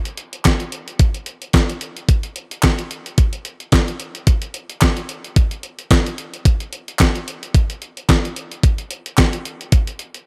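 A crisp 8-bit digital drum machine drives a swung sixteenth-note funk groove in 4/4, its thumpy kick, fat snare and hi-hat sitting up front with a sampler-style, small-room character. Behind it, a group handclap adds a human, acoustic snap from 0.4 to 9.3 seconds, tucked into the background. The sound is dry, with little reverb, giving this short cut from a longer piece a late-night, funky mood.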